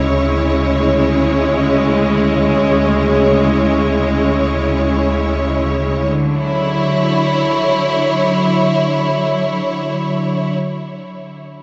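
Peaceful and warm, this ambient passage floats in free time in D lydian, cut from a longer piece. A symphonic string section carries it alone from 0.0 to 10.6 s, holding sustained bowed chords that reach from D2 up to C#5. The ensemble sounds lush and smooth, with an even vibrato, and it sits close and up front. The harmony rests on C#m/D and then moves to Dmaj9 at 6.1 s, opening into a second section. A huge, wet reverb with a 7.1-second tail surrounds the strings, and the sound tops out at 8.0 kHz, giving it a soft, rounded glow.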